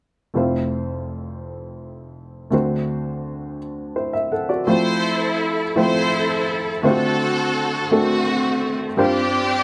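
Uplifting and reverent, this gospel piece in 6/8 opens with a dark, mellow baby grand piano, its action noise audible, laying down accompaniment over Fmaj7 and D7 chords before a lush, bowed string section with vibrato takes up the melody at 4.7 seconds, both parts sitting up front in a large studio reverb through a G7sus4 chord at 9.0 seconds until the cut at 9.6 seconds.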